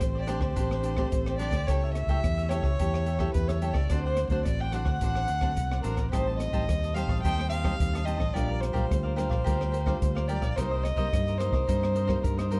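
A straight 4/4 samba-and-choro groove rides on a small-room jazz kit of hi-hat, boomy kick and rim click, while an up-front fingered electric bass anchors a fingerpicked nylon-string guitar with audible finger squeak and a crisp, bright picked cavaquinho entering at 0.1 seconds, all supporting a woody, dark bowed violin melody shaped with vibrato, giving this lively yet nostalgic excerpt a dusky, lightly reverberant sound.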